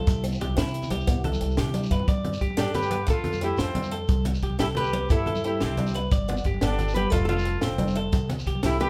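Fingerpicked nylon-string guitar carries the melody in this joyful highlife guitar-band excerpt in a straight 12/8, entering at 2.6 seconds alongside a bright, vintage-toned trumpet that adds a jazz-style second line with vibrato. Underneath, a twangy, compressed clean electric guitar spins arpeggios throughout, while a boxy archtop acoustic with old strings picks accompaniment in the background. A growly, woody pizzicato upright bass anchors the low end, joined by a compact cocktail kit with a high-tuned snare and punchy kick, thin-skinned congas, and a grainy shekere tucked behind the band. A dark, round tonewheel organ with third-harmonic percussion and a slow rotary speaker holds sustained chords only in the opening 2.1 seconds before dropping out as the second section begins. The harmony cycles through C, G and F, and the band sounds as if playing live together in one room with light reverb.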